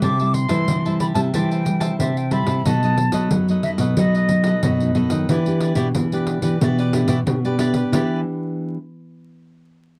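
A dry, close 1970s-style studio recording with vinyl crackle frames this yearning, bittersweet fragment of samba and choro, where an airy, distant concert flute sings an expressive, tongued melody with vibrato until 4.9 seconds over a crisp, picked cavaquinho, two thumb-plucked classical nylon-string guitars carrying the accompaniment and the bass, and a jingly pandeiro played with soft hands.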